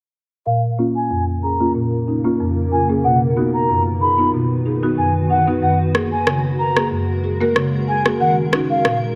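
Bouncy and tough, this dancehall excerpt moves in a straight 4/4 over a chord progression that runs from Bbm through B and Gbadd9 to Ebm7. A buzzing marimba struck with medium mallets carries the accompaniment from 0.5 seconds, its hardwood bars sounding woody, dry and full, close-miked and up front under a low-pass filter. Above it, a mellow baroque flute sings the melody in a high register, pure with vibrato and a crisp attack, its highs rolled off and trailed by tape echo. A granular cloud pad enters at 1.5 seconds with slow-attack sustained chords that feel blurred and evolving, detuned and bathed in its own reverb. At 5.9 seconds an overdriven electronic rim click enters as the drums, sitting up front, while a filter sweep runs across the whole passage in a small room with light reverb.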